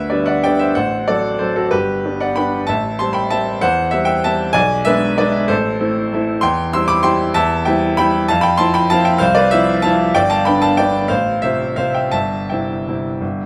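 A classical piano waltz in 3/4 with a rubato feel, sparkling and graceful, heard in a short passage cut from a longer piece. A solo grand piano carries it all, its tone clear and open with long sustain, placed up front and spanning from deep bass to bright upper register. Close, detailed microphones capture the instrument within a moderate recital hall reverb, and the harmony settles firmly into its home key from 6.4 seconds.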